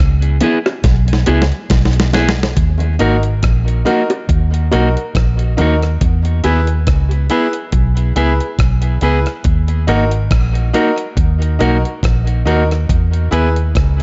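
Spacious and heavy, this slow dub reggae passage at 70 BPM sits in Eb phrygian with a lightly swung 16th feel, moving between E and Ebm chords. A dark, round, foam-muted electric bass and a gritty, compressed sampler-style drum kit with a thumpy kick sit up front, opening on a break with a drum fill that runs to 2.6 s, while a twangy, slightly broken-up electric guitar and low-tuned, saturated bongos in the background both carry tape echo, the bongos dropping out at 6.7 s. From 3.0 s a brilliant grand piano adds short, open stabs, also with tape echo, inside a light digital reverb and a rolled-off top end.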